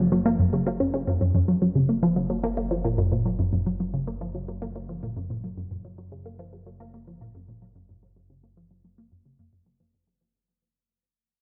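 Ambient, sequencer-driven space music with a cosmic, expansive mood, moving in a straight 4/4 pulse across this short cut from a longer piece. A resonant blip pluck carries the riff from 0.0 to 9.9 seconds, its juicy, squelchy tone built from detuned square and sawtooth waves with a noise layer, fast attack and decaying filter pluck, sitting up front through phaser and tape echo. Beneath it, an analog drone holds a low bass note throughout, its sawtooth and pulse-width-modulated pulse waves giving a mellow, vintage, warbling, evolving quality softened by chorus, slow attack and long release. A filter sweep runs across the arpeggio sound from start to finish while the whole passage fades out over the same span. A moderate plate reverb lends a spacious tail, with the top end rolled off above 7.5 kHz.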